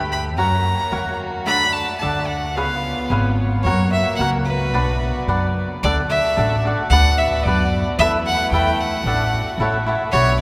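Heard through a cathedral reverb that lingers for 6.3 seconds, this mariachi-style Mexican folk piece sounds as if it was captured in a church or concert hall, and it opens as a passage taken from a longer work. At 111 BPM in a straight 2/4, the mood is proud and romantic, starting in B minor before turning to D major at 5.8 seconds. A clear, biting solo violin carries the melody up front, bowed by one player with light vibrato and an intense yet smooth top. Beneath it, a chamber violin section holds sustained chords with a rich, reedy, period-style gut-string tone. A mellow, crisp, picked cavaquinho supplies acoustic accompaniment from 0.4 seconds. The upright bass is played pizzicato on steel strings, and it sits prominently with a woody, warm sound.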